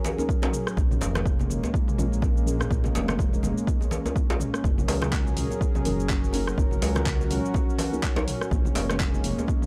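This dry, gritty hardware recording carries a faint mains hum and little reverb, framing a hypnotic, warm afro house excerpt in Bb minor at 124 BPM, with a 16th-note swing of 57%. A smooth analog pad with a slow attack and long release holds sustained chords from the start, pumping against the kick and shimmering with chorus, while a soft, wave-folded chord stab sits in the background with analog delay, the harmony moving between Gb6 and Bbm7. A punchy, up-front electronic kick anchors the groove, joined by a layered deep house kit of cabasa, handclaps, hi-hat, rim click and toms. Acoustic hand percussion adds texture: a deep djembe played with hard hands in a small room, and very quiet, low-tuned congas that ring close to the ear. From 0.8 seconds a dark, detuned sawtooth bass rumbles and beats, thickened by transformer saturation and pumping in time with the kick.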